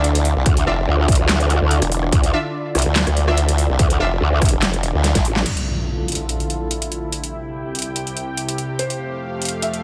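Heavy wobble dubstep in D minor at 144 BPM with a swung half-time feel, this aggressive, menacing cut opens on a drop where a formant-sweep wobble bass sits up front beside a dubstep kit with a huge snare and metallic hats, joined half a second in by a saturated, growling bass with chorus and overdrive and a punchy kick, while bold orchestra-hit-like stabs trail dub echo over a lush supersaw pad pumping under sidechain. A drum fill and band accent lead into an electronic impact at 5.5 seconds, after which the low-pass-filtered pad sweeps along with the kit over chords moving from Dmadd9 to C. At 8.8 seconds a soft, felt-muted upright piano enters on Fadd9, intimate and mellow with audible action noise, all set in a light reverb.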